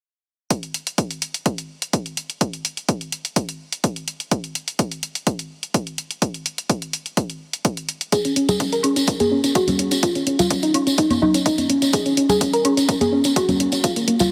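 A soft, round pluck carries the arpeggios from 8.1 seconds, its dark, fast-attack tone spread by lush chorus and delay and pumping against the sidechain between Bb3 and Bb4. This short cut from a longer progressive house piece moves at 126 BPM in 4/4 in Db major, with a hopeful, euphoric mood. An overdriven electronic kick and hi-hat sit up front from 0.5 seconds, the kick punchy and layered with a high-pass filter. A jingly tambourine arrives at 8.1 seconds from a distant, large room, and ringing congas and woodblock follow at 8.5 seconds, close and pumping with the sidechain. Light studio reverb frames the mix, which has a heavily compressed radio sound.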